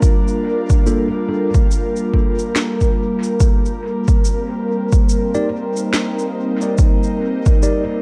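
An airy, breathy pad holds sustained chords from the start, up front beside a punchy, layered electronic kick, while a woody electronic snare and shaker sit lower in the mix, their hits trailing dub echo. At 0.9 s a mellow tine electric piano enters with clean stabs that also carry dub echo, as the harmony moves from Gm7 to Cm7 at 3.4 s. This hazy, meditative ambient dub cut moves at 71 BPM in 4/4 with a 16th-note swing, set in a digital echo-chamber ambience.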